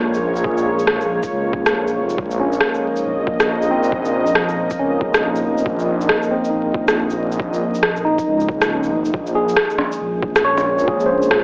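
A swung 4/4 future garage groove is driven by an overdriven, up-front electronic shaker and rim click, with a muffled, pitched-down, thumpy kick arriving at 0.4 s beneath a menacing, detuned saw bass that pumps from sidechain compression. Above it, a deep, moody ambient pad with chorus and a slow attack and a clean, direct tine electric piano with phaser and analog delay both pump in the same way, setting a melancholic, wistful mood. The cut sounds like a heavily compressed AM radio broadcast dusted with vinyl crackle and light digital ambience.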